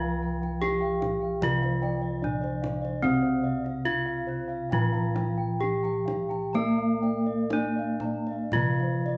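A ceremonial, serene passage of Javanese gamelan opens with bronze metallophones and bossed gongs sounding together: a bright, up-front melody struck with a horn mallet rings over a dark, smooth accompaniment whose paired tuning gives shimmering beats. Airy high metallophone arpeggios sit in the background alongside mellow, soft gong patterns played with padded beaters, while lower round, beating gongs carry the bass. At 0.4 seconds a tight, band-limited kendang joins behind the ensemble, all captured live in one room with a wet, large studio reverb in this short cut from a longer piece.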